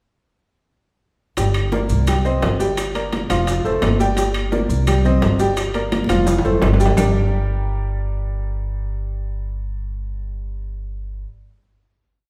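Fiery and driving, this short salsa piece in G minor at 172 BPM opens with a bright, worn grand piano playing a montuno in octaves and a dark, thumpy upright bass anticipating the chords, backed by distant slapping congas, round low-tuned bongos with hand bell, ringing saturated timbales, grainy maracas and very quiet woody claves in a live-room reverb, until a drum fill at 5.9 seconds leads the percussion to stop at 7.1 seconds while piano and bass hold a final G minor chord.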